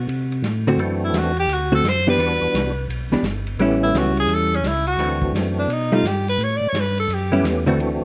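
A swinging, soulful soul jazz organ trio excerpt at 171 BPM in 4/4, cut from a longer piece, where a clear tenor saxophone solos from the start with vibrato, soft attacks and scooped notes, sounding roomy yet up front, over a round, mellow tonewheel organ bass line with chorus vibrato and slow rotary speaker, muffled lo-fi drums with a tight kick and rolled-off top, compressed comping from a dark hollow-body jazz guitar entering at 0.7 seconds, and a fat, percussive tonewheel organ melody with key click and third harmonic percussion joining at 0.8 seconds, all captured in a rough home demo mix with light small-room reverb.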